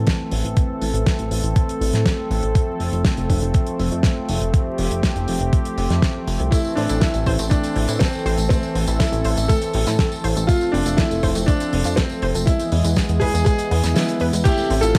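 A straight 4/4 pulse at 121 BPM drives this danceable, bittersweet italo disco excerpt in A minor, as a thumpy electronic kick and a dry, damped 70s drum kit with fat snare, hi-hat, handclaps, tambourine and crash cymbal sit under a glossy, up-front chorused synth bass and a smooth, warbling analog pad holding sustained chords; a clear concert grand piano melody with delay and a detuned, decaying analog pluck playing arpeggios in the background both enter at 6.5 s, and the kick drops out at 14.0 s for a band accent, the whole mix carrying vinyl crackle and light studio reverb.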